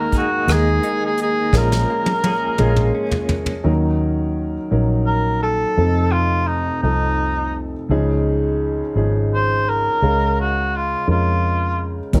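A mellow cor anglais carries the melody from the very start of this short acoustic folk-pop ballad, its soft attack and gentle vibrato sounding distant and roomy, in a reflective, heartbroken mood. Beneath it, a grand piano with long sustain and audible action noise gives an intimate, slightly boxy accompaniment, while a bright, twangy clean electric guitar, recorded direct and compressed, picks tremolo-tinged arpeggios until 3.7 seconds. A brush drum kit with a fat snare and punchy kick plays a fill from 1.5 seconds before dropping out, returning only briefly at the very end, and a vintage foam-muted fingered bass, dark and round, enters at 0.5 seconds. The piece moves slowly at 56 BPM in a straight 6/8 in Bb minor, with chords shifting from Ebsus4 and Bbm7 through Ebm7, F7 and Dbadd9 to Bbm7/Db. Light reverb surrounds the sound of this fragment cut from a longer piece.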